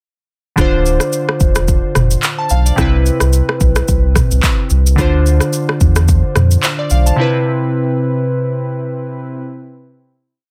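A joyful, romantic afrobeats piece at 109 BPM in C major opens at 0.6 s with glassy, warbling digital keys holding spread Dm7 and Cmaj7 chords with chorus, a filter sweep and short fills. From the same moment, a deep, bouncy sub bass with octave slides through syncopated lines, and a tape-warm, up-front afro-pop kit sets a swung sixteenth-note groove of soft kick, syncopated rim clicks, shaker, handclaps and toms, its snare lightly clipped. The bass and drums drop out around 7.1 and 7.2 s, leaving the bright vintage keys alone until 9.4 s in a dry, dense, heavily limited modern mix.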